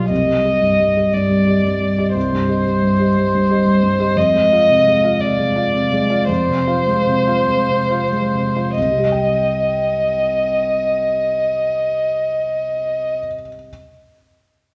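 A rubato 6/8 pulse moves in slow dotted-quarter beats of roughly 45-60 BPM, easing and slowing between 3.2 and 8.8 seconds in this fragment cut from a longer neoclassical piece for piano and strings in C minor. A felt-muted upright piano carries the accompaniment from its low C2 up to G5, its thick felt giving a soft, mellow, intimate tone with audible action noise and a vintage character. Over it, a single bowed violin sings a longing melody between C5 and Eb5, dark and woody with vibrato. The harmony rests on C minor, shifts to F minor, then returns to C minor as a second section opens at 8.8 seconds, where the violin stops at 13.2 seconds and the piano rings on alone a moment longer. A recital hall reverb wraps the fragile, longing mood in the wet resonance of a church or concert hall.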